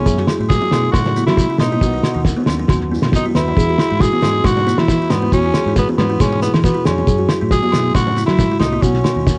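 Highlife guitar band music with a sunny, danceable mood, heard in a short cut from a longer piece recorded at home on cassette. A raspy, gritty tenor saxophone carries the melody with vibrato in a punchy pop style, while a buzzing kalimba plays woody, thumbnail-plucked arpeggios with tape echo. Beneath them, a clean, hollow-bodied semi-hollow electric guitar sits in the background with subtle chorus, and a fingered electric bass adds a round, punchy low end. The cloth-damped drum kit sounds thuddy and up front, with a fat snare and tight kick, and plays a fill from 3.2 to 3.6 seconds. Shekere, agogo bells and high-tuned congas struck with hard hands fill out the percussion, with the congas entering at 0.6 seconds, over chords moving from F#m to B and E under a light small-room reverb.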